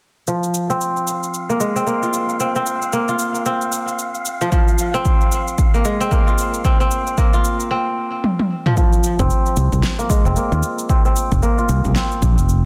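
Hypnotic and meditative, this organic downtempo passage in F minor moves at 113 BPM with a swung sixteenth-note feel, cut from a longer piece. A crisp, ringing kora carries fingerpicked arpeggios up front from the start, softened by a low-pass filter and echoed by digital delay, with a filter sweep running across its part until 8.8 seconds. A deep house drum kit with a fat snare, cabasa and toms enters alongside it, while an airy, breathy wind-like noise texture holds a sustained F5 in the background, its slow attack and long release bathed in built-in reverb. A punchy electronic kick pushes in at 4.5 seconds, and after a brief break marked by a drum fill, the second section brings in a round, dark fretless electric bass at 9.2 seconds, its tone thickened by tube saturation. The whole sits in light reverb under a dense, heavily limited modern master.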